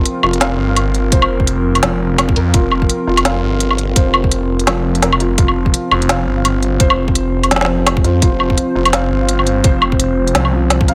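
A hard-clipped, tape-warm electronic kick enters at 1.1 s and briefly drops out at 5.0 s in this heavy, cinematic half-time drum and bass cut, over a swirling, thick phased saw bass up front, a kit with a woody snare, crisp hats and woodblock, a dark, wave-folded analog pad holding sustained chords with chorus and sidechain pumping, and a soft felt-muted upright piano playing intimate arpeggios through tape echo with audible action noise, all set in light digital ambience.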